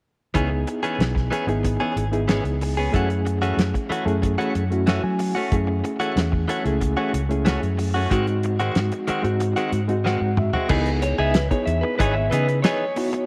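Set in a small room with light reverb, this straight-eighth soul blues at 93 BPM in C# minor has a smoky, brooding mood, moving from C#m7 through F#m7 and G#7 to C#m9. A bright, reedy electric piano with fast tremolo carries the accompaniment and adds short fills. A clean, direct-recorded guitar with slapback echo plays up-front stabs, over a round, dark fingered bass and a cloth-damped, thuddy drum kit with a fat snare, tight kick and dark cymbals that rolls into a fill at 10.1 s. From 11.0 s, a compressed lap steel with slide, volume swells and slapback echo adds a second line in this fragment of a longer piece.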